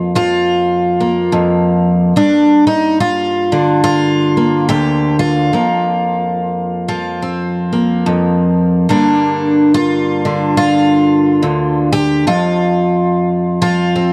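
Swung eighths in 4/4 carry this reflective, wistful solo folk piece, played on a picked twelve-string acoustic guitar that moves between Fsus4 and Gm7 before settling on F5 at 12.3 seconds. The fresh strings give a shimmering, octave-doubled ring across a range from low D to the G above middle C. The guitar sits up front in a dry, close 1970s-style studio sound, and this brief 14.1-second cut is taken from a longer piece.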